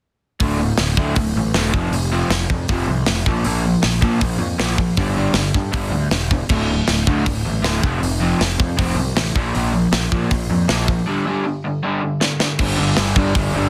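A straight 4/4 pulse at 158 BPM drives this urgent, raw punk rock excerpt, with a tight, up-front acoustic drum kit of crash, hi-hat, snare and saturated kick giving a gritty, rolled-off sound and a fill at 12.2 seconds. A double-tracked, crunchy overdriven guitar riff and a growly fuzz bass play through chords on D5, F5, Bb5 and G5 from 0.4 seconds, the bass reaching down to D1. The mix is dry, dense and heavily limited, and the music moves into a new section at 12.6 seconds before breaking off.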